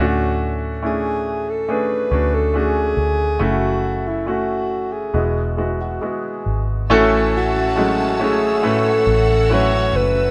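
Pop ballad at 70 BPM in A major, tender and emotional, where a breathy alto saxophone sings the melody with subtone and scooped notes over clear concert grand piano and a round, punchy muted electric bass, before a dark violin section, a bowed string section holding vibrato chords and a picked steel-string acoustic guitar with audible finger squeak join at 6.9 seconds, all in the light reverb of a band playing together in one room.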